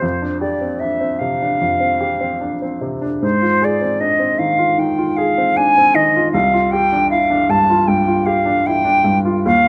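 A silver concert flute sings a pure, straight-toned melody with a crisp attack over a clear, short-sustained baby grand piano accompaniment, both present from the start of this dreamy, luminous impressionist classical passage at 77 BPM in a rubato 4/4, its harmony drifting from Csus24/F to Ab6 at 3.2 seconds and settling on Csus24 at 6.3 seconds, the duo framed by moderate recital-hall reverb and close, detailed microphones.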